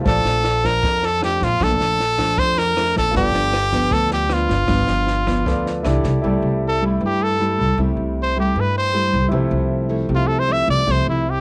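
A straight, even bossa nova groove in four runs through this short clip cut from a longer piece, with a compact cocktail drum kit in the background on punchy kick, rim click and a high-tuned snare until it drops out at 6.1 seconds. The mood is sunny and relaxed. A fingerpicked nylon-string guitar supplies full-bodied classical accompaniment, while a pizzicato upright bass with steel strings adds a woody low end. A bright grand piano fills in higher voicings with a natural tone, set back in the mix. Up front, a brilliant trumpet carries the melody in jazz style, punchy and forceful with light vibrato and scooped notes, moving into a solo from 6.2 seconds as the harmony passes from Bbmaj7 and G7 to C69 and Fmaj7/C. The recording has a homespun cassette character with light reverb.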